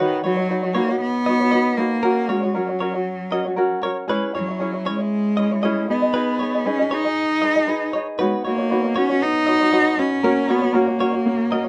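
A rich, bowed cello carries the melody from the first moment, up front and focused with vibrato, joined at once by a thumb-plucked tenor ukulele whose light, acoustic tone sits close beside it. This easy-going, sunny acoustic pop excerpt moves at 117 BPM in 4/4 with a gentle 16th-note swing, set in B major and moving through chords from Badd9 to F# and C#m. A clean electric guitar, recorded direct with a compressed, scooped tone and a vibrato effect, adds picked arpeggios from the start. At 8.2 seconds a brilliant, woody upright piano enters in the background with open, bright accompaniment as the harmony returns to Badd9. A light reverb gives the ensemble a soft sense of space through to the cut at 11.7 seconds.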